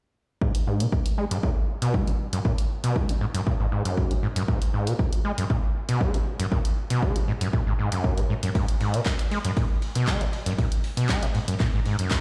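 Played through a big sound system in a bare stone room, this trippy, gritty acid house fragment in G# minor runs at 118 BPM, with a squelchy, resonant, distorted sawtooth acid bass riff under a constant filter sweep and analog delay sitting up front beside a punchy analog kick, while a drum machine adds handclaps and hi-hat and a compressed, pitched-up breakbeat sampler kit with a high-tuned snare, ride and filtered, pumping cymbals slips into the background at 8.6 seconds.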